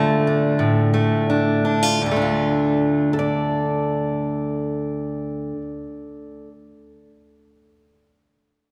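A long, wet church reverb of 3.4 seconds surrounds this brief folk fragment, cut from a longer piece and tuned to A4 = 438 Hz, with a bittersweet, wistful mood in D minor. A fingerpicked steel-string acoustic guitar, brilliant in tone with fresh strings and placed up front, plays accompaniment from 0.0 to 6.5 seconds across a range from D2 to D5 over a Dm chord. The straight 4/4 pulse sits around 81-91 BPM and slows down over the first 2.0 seconds.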